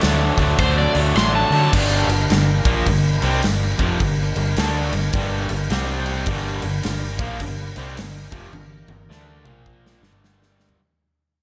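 Overdriven slide guitar cuts in briefly from 0.6 to 1.7 seconds, a dark, fingerpicked melody soaked in plate reverb and tape echo, over a heavy, smoky blues rock groove with a southern rock lean. A bright, double-tracked distorted electric guitar drives the riff up front, while a foam-muted fingered bass adds a round, punchy low end. The big rock drum kit sits forward in a large room, with bright cymbals, a medium-tuned snare and a punchy kick, and it plays a fill from 8.5 seconds to the close. In the background, a thick, gritty overdriven tonewheel organ holds sustained chords through chorus vibrato and a slow rotary speaker. At 106 BPM in 4/4 with a swung eighth-note feel, the piece moves from D to a long stretch centred on G minor, touching C5 and Bb5 along the way, as this section cut from a longer piece fades out from 1.7 seconds under light reverb.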